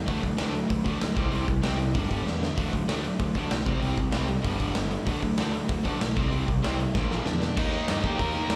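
Heard as a live gig through the venue's PA with club ambience, this rowdy, energetic punk rock excerpt at 192 BPM has a gritty, punchy garage drum kit up front in a pumping stone room; a growly fuzz bass; two bright distorted guitar riffs in the background, one with slapback echo, cycling D, C5 and G5; and a dark, smooth overdriven lead melody entering at 7.3 s before a double-tracked high-gain guitar joins at 7.6 s as the chords move from Bb to Eb.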